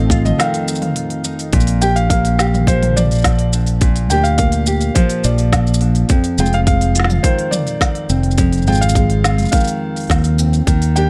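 A straight 4/4 pulse at 105 BPM anchors this intimate, delicate folktronica piece in F dorian, cut from a longer work, with a tight electronic kick and an organic electronic kit of woody snare, smooth hats, shaker and toms set in a small room. A brief break falls between 0.4 and 1.5 seconds, while a warbling, nostalgic tape-like pad holds sustained chords in the background, its detuned, slow-attack tone softened by chorus and its own reverb before it stops at 1.5 seconds. A felt-muted upright piano carries the melody in a soft, vintage voice with a touch of delay. Beneath it, a fingerpicked nylon-string guitar plays full-bodied arpeggios with delay, and a growly, up-front fingered electric bass sits prominently at the bottom. The harmony moves from F7 to Bb6 and settles on Fm7 at 6.1 seconds, all within a dark production lightly coated in digital ambience.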